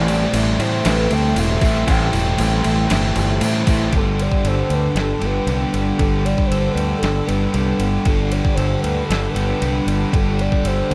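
A breathy sine lead sings a wistful, dreamy melody over a growling, overdriven fingered bass that sits up front, opening this shoegaze and dream pop excerpt with a chorus sheen, slapback echo and gliding vibrato. Beneath them, a thick fuzz guitar with ensemble chorus grinds out a riff, joined by a biting overdriven guitar riff trailed by reverse reverb and a very quiet, double-tracked overdriven guitar that drops out at 3.9 seconds. A slightly broken-up guitar through a small old amp picks arpeggios in the background, colored by analog chorus and slapback echo. A detuned 8-bit drum machine with a thumpy kick, snare, ride and crash drives the straight 4/4 beat, while a jingly tambourine shimmers faintly until 3.8 seconds and a very quiet, morphing wavetable pad with phaser holds sustained chords. The harmony moves from Am7 to Gadd9, all wrapped in a dark production with light reverb.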